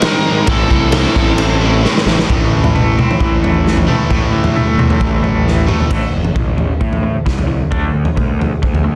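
A straight 4/4 drive at 132 BPM powers this cathartic, angsty quiet-loud alternative rock excerpt in A minor: a gritty, up-front garage drum kit with a punchy kick and fills in a bright stone room, a growly fuzz bass entering at 0.5 seconds, and a cranked stack guitar riff are joined at first by a background overdriven guitar riff and a biting lead melody with tape echo that stops at 1.8 seconds, until twangy clean arpeggios with tremolo enter at 2.3 seconds and carry on with the drums and bass once the stack guitar drops out and the harmony turns A dorian at 5.9 seconds, all under light reverb and a dense, heavily limited master.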